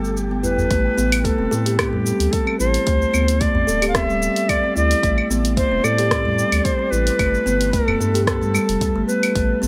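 A Native American-style cedar flute leads this mystical, meditative organic downtempo piece, its pure wooden tone sitting up front with vibrato and tongued notes, trailed by digital delay and shimmer reverb. Beneath it, a kalimba plays thumb-plucked arpeggios that ring dark and smooth off a solid board, carrying the same delay and shimmer. A round sine sub bass holds sustained low notes with sidechain pumping. A layered deep house kit of cabasa, claves, hi-hat and rim click sets a lightly swung pulse, joined at 0.7 seconds by a deep electronic kick that drops out at 9.5 seconds. A small, close and dry udu sits in the background, while an airy, breathy wind-like texture appears faintly only at the very start and end. The chords move from Gadd9 to Am, D5, Am and back to Gadd9, all within light reverb and digital ambience, in a passage cut from a longer piece.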